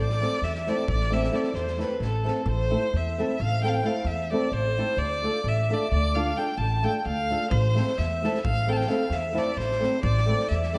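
A clear, smooth violin carries the melody between A4 and A5, bowed by a single player with even vibrato, sitting up front yet with a distant quality in this fiery, restless Balkan wedding-band excerpt. It moves in a brisk 11/8 at 262 BPM counted in eighths, with a straight feel in A minor, the harmony shifting from Am to Dm at 5.0 seconds and back to Am at 7.5 seconds. An up-front upright bass plays pizzicato on steel strings, woody and growly in the low register, while a fingerpicked flamenco guitar with fresh strings adds accompaniment, colored by analog chorus. A loose, gritty drum kit with a punchy kick and medium-tuned snare sits in the background with a saturated, rolled-off top, dropping out after 2.3 seconds and returning at 7.5 seconds. The whole mix is dreamy and soaked in a lush hall reverb, giving the quick dance a hazy, spacious glow.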